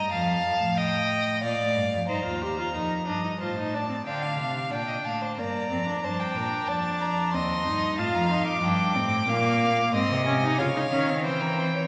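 Baroque-style classical fugue for string quartet in Eb major, serious and contemplative, moving at 92 BPM in 3/4 with a straight feel, a fragment cut from a longer piece. Two bowed violins carry the melody and a second line with vibrato, one smooth and even, the other focused, above a rich, up-front cello bass with a smooth top, and a close viola joins with accompaniment at 2.1 s. The quartet sits in the wet reverb of a church, its long decay lending the counterpoint a spacious, resonant halo.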